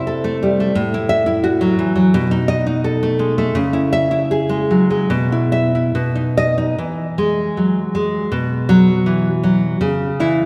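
A long, wet church reverb surrounds this short cut from a longer romantic piece for solo classical guitar in E major, played at a rubato 70-88 BPM in 2/4. The fingerpicked nylon-string guitar sits up front with a full-bodied, deep classical tone, ranging from A2 to E5 in a tender, sunny mood. It moves from Am/C through B7 and C#m to a Bsus4 that settles on B, then opens into a new section at 6.8 s on E before ending on C#m.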